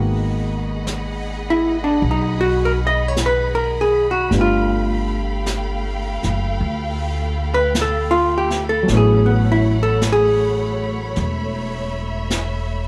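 A wistful, smoky jazz ballad moving at a slow 52 BPM in 4/4 with a gentle swing, heard as a short section cut from a longer piece. A dark, clean hollow-body electric guitar carries the melody up front from 1.5 seconds, its picked lines set in plate reverb. Beneath it, a baby grand piano plays intimate accompaniment with audible action noise, while a distant studio string section holds lush, bowed chords with expressive vibrato and portamento. The upright bass sits close and thumpy, its pizzicato tone woody and bright. A brush drum kit joins at 0.9 seconds, roomy and distant, with brushed snare and hi-hat. The harmony drifts from G#m7 through G9 to A69 under a light overall reverb.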